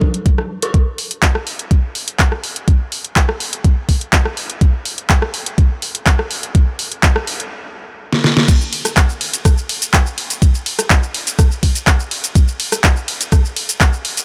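Driving at 124 BPM in a straight 4/4, this house excerpt opens on an overdriven electronic kick drum with a knocking, up-front punch, layered with a pop drum kit whose deep snare, handclaps, hi-hat, ride, rim click, shaker and crash cymbal carry the same gritty overdrive and small-room character. For the first 0.7 seconds a bright, distant burst of congas, cowbell and woodblock sounds in a large room, pumping against the sidechain before it falls away. From there the drums alone carry a build-up that ends in a fill from 8.1 seconds, landing on the drop at 8.5 seconds. The mood is driving yet bittersweet, and the dry, close sound keeps the layered, produced drums dense and forward. The passage is cut from a longer piece.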